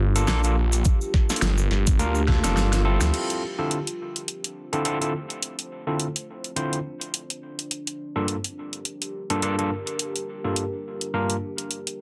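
A swirling, thick phased saw bass and a deep, moody pad with chorus and sidechain pumping open this gritty, playful glitch hop piece in D minor at 105 BPM with swung 16ths, soon joined by barky overdriven tine electric piano stabs through a combo amp with 12-bit grit and delay, an up-front overdriven pop kit with a fat snare, a grainy cabasa in the background and a knocking electronic kick from 0.9 to 2.4 seconds, before a drum fill carries the music past the bass and cabasa, which stop at 3.1 seconds as the chords move from Gm7 to Dm7, all under a dense, heavily limited master with light reverb.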